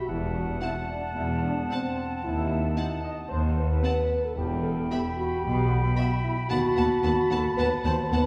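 A playful, whimsical cinematic film cue in E minor at 112 BPM, sneaky and quirky in mood, cut from a longer piece and heard from further back in a wet concert hall. A close, focused violin section carries the melody from 0.6 s over a lush second violin section in the background, while a clear clarinet and an airy concert flute add second lines, a French horn section holds roomy sustained chords, and a viola section with portamento supplies the accompaniment. Cello and smooth double bass sections anchor the bass through F#m7b5/E, D#dim7, Em and B7/D# before the music stops at 8.3 s.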